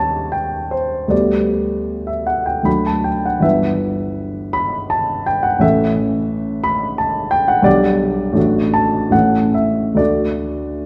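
Passionate and lyrical, this romantic character piece for solo piano moves in a rubato 3/4 between 66 and 91 BPM in G major, a brief passage cut from a longer work. The grand piano sits up front with an intimate, natural tone and audible action noise, spanning G1 to B5 as the harmony travels from Eb7 through Em7/G and A before settling on D at 10.0 seconds. A wet recital hall reverb and a dark, warm production surround the instrument.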